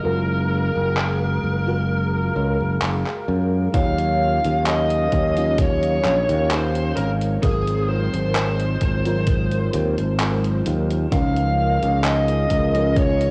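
Heard through worn, warbling cassette tape with pitch drift, a low-pass filter and light studio reverb, this nostalgic, dreamy vaporwave fragment drifts at 65 BPM over Gbmaj9, Ebm9, Ab13 and Db69, where a dark, distorted, picked lead guitar carries a bluesy melody with tape echo up front. A bright, growly fingered electric bass also sits up front, while a lush FM electric piano with a soft pad layer, colored by phaser, chorus and tape echo, and a mellow, lo-fi square-wave pad with a filter sweep in the opening seconds hover in the background; detuned 8-bit drum-machine handclaps and hi-hat arrive at 1.0 seconds, and a thumpy electronic kick joins at 3.7 seconds.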